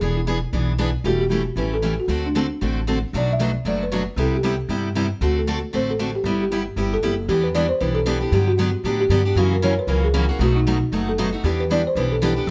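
Lightly reverberant, this charming, swinging 12-second slice of acoustic string swing at 231 BPM sets a mellow, round soft-mallet folk marimba melody over two picked steel-string acoustic guitars, one up front with audible finger squeak and a full-bodied one in the background, plus a woody, thumpy pizzicato upright bass on gut strings, moving from G major into E minor at 7.3 seconds.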